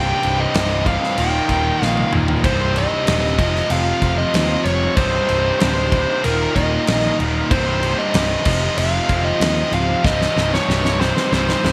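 This heavy, driving hard rock excerpt in C minor moves at 95 BPM, led by a warm, distorted lead guitar that sits up front, picking a bluesy melody in a high register. Beneath it, three picked rhythm guitars share the low riff: a bright, cranked stack guitar with overdrive and subtle chorus, a scooped high-gain guitar in the background, and a very quiet double-tracked distorted guitar. A fingered electric bass with an amped tone anchors the bottom, while a very quiet overdriven tonewheel organ holds full, gritty chords with key click, percussion and a slow rotary speaker. A big rock drum kit enters at 0.2 seconds with a fat snare, punchy kick, crashes and toms treated with gated reverb, playing fills at 1.8 seconds and again from 10.1 seconds to the close. The chords cycle through Cm, Eb and Fm, and a lush hall reverb and bright 1980s-style digital production give the track its arena-sized sheen.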